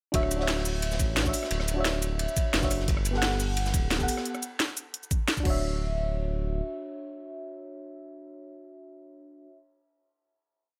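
A round, warbling FM electric piano with chorus and dub echo accompanies this dreamy liquid drum and bass piece, playing syncopated chord stabs that move from Dmaj9 to Gmaj9 and back. Beneath it, a smooth sawtooth synth bass holds long gliding notes, while a knocking overdriven electronic kick and a layered drum kit, with a cracking snare, bright hats, rim clicks, shaker and crash, roll in a two-step pattern alongside a gritty, darker looped breakbeat with edits that drops out at 4.2 s. The drums stop at 5.5 s for a final hit, and after the bass ends at 6.6 s the piano rings on alone in a small, lightly reverberant room until 9.6 s.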